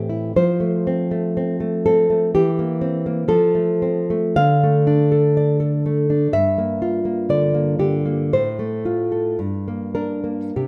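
In a rubato 2/4 that drifts between 46 and 64 BPM, this intimate, wistful excerpt of a romantic classical piece features a solo nylon-string guitar, thumb-plucked and up front, ranging from G2 to F5 as it moves through F, C7/E, Dm, Gm7, F/A and Gm, its warm acoustic tone set in a moderate scoring-stage reverb with a 1.7-second decay.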